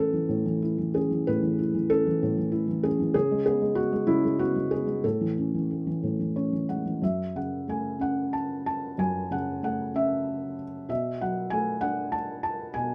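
Tender and warm, this short cut from a longer classical piece features a felt-muted upright piano playing alone in a lyrical, rubato 6/8, around 60-66 BPM. The piano's dark, mellow tone and short sustain sit close and intimate in a small room. A brief fill at 6.0 seconds leads from A major, through Amaj7, into F# minor at 7.0 seconds, where F#m7 and Bm7 chords carry the music on.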